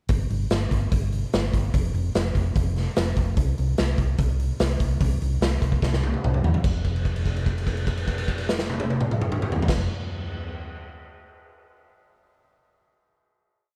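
A straight 4/4 groove at 147 BPM drives this short, upbeat yet wistful indie rock piece, where a gritty, saturated garage drum kit sits up front in a bright, pumping stone room with a punchy kick, medium-tuned snare, hi-hat, crash and toms, over a dark, round hollow-body electric bass playing driving eighth notes between F1 and E2, all in a dry mix, until a drum fill at 5.8 seconds leads into a final note held from 6.6 to 9.7 seconds.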